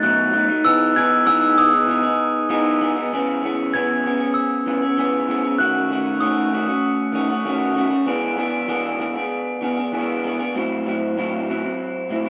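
A glockenspiel played with rubber mallets carries the melody high in its register, its bell-like, airy tone softened by a lush chorus and tape echo before it stops at 7.7 seconds. This short indie pop excerpt moves at 97 BPM in a straight 4/4 feel in E major, with a dreamy, sunny mood. An electric guitar through a small old amp sits up front as accompaniment until 12.3 seconds, sounding twangy and slightly broken-up, with a subtle chorus and a warbly pitch drift. The harmony drifts through colorful seventh and sixth chords, opening on B7 and Emaj7 and later passing through D#m7b5 and E7 before landing on Am6. A moderate spring reverb and the worn, warbling character of old cassette tape give the whole recording a hazy, lo-fi glow.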